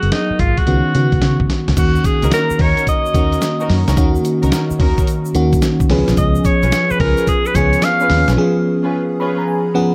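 This upbeat, bouncy new jack swing excerpt opens with everything but the percussion and strings at once: a bright, forceful alto saxophone carries the melody with light vibrato and tape echo, over a lush, dreamy FM electric piano layered with a soft pad and treated with chorus, a round, punchy foam-muted fingered bass, and a gritty, compressed sampler-style drum kit with a thumpy kick, medium-tuned snare, hi-hat and crash. At 109 BPM in 4/4 with a heavy sixteenth-note swing, the R&B groove moves through G#m9 and C#9sus4 before settling on D#m7 and later C#7. A grainy egg shaker enters in the background at 1.8 seconds, and muted, veiled con sordino strings add distant, bowed stabs from 2.2 seconds. The saxophone, bass, drums and shaker drop out around 8.4 seconds, and as the strings finish by 9.4 seconds, the electric piano plays a closing fill that runs to 9.9 seconds. The production is dark with a moderate plate reverb, with the saxophone, electric piano and drums sitting up front.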